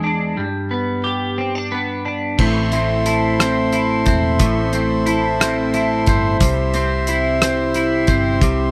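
Swaying and romantic, this fragment of a six-eight pop ballad opens with a bright, twangy twelve-string electric guitar, double-tracked and compressed, playing accompaniment alone and up front in the mix. At 2.4 seconds the rest of the band arrives together: a thick pipe organ holds sustained chords on its foundation stops, a full-bodied steel-string acoustic guitar picks arpeggios in the background, and a round, punchy hollow-body bass sits underneath. A damped 70s drum kit, dry and polished with dark cymbals and a tight kick, marks the time with crash, hi-hat and rim clicks. The harmony moves from G to A minor and then settles on C at 6.4 seconds, giving the passage a tender lift. Light studio reverb adds a touch of air, and the excerpt is cut from a longer song.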